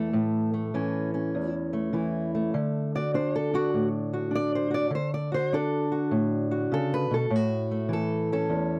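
A swung 4/4 lilt at 100 BPM carries this soulful, laid-back snippet of acoustic country blues, cut from a longer piece, where a lone fingerpicked old ladder-braced acoustic guitar with aged strings sounds dark, woody and boxy, sitting up front in a dry, close 1970s-style studio room with light reverb as it ranges from E2 to D5 over A, shifting to D at 2.5 seconds and back to A at 7.3 seconds.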